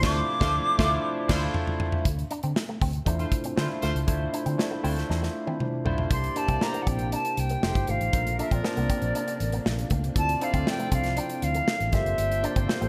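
A bright 1980s-style digital production set in a moderate, lush hall reverb carries this bittersweet, nocturnal jazz-funk pop fragment, where punchy up-front drums opening with a fill, a dark, round muted bass, a barky, lightly overdriven tine electric piano with chorus, a tight background horn section, a very quiet, silky string machine and a twangy envelope-filtered guitar entering at 2.2 seconds frame a pure, distant concert flute melody with vibrato that returns at 6.1 seconds.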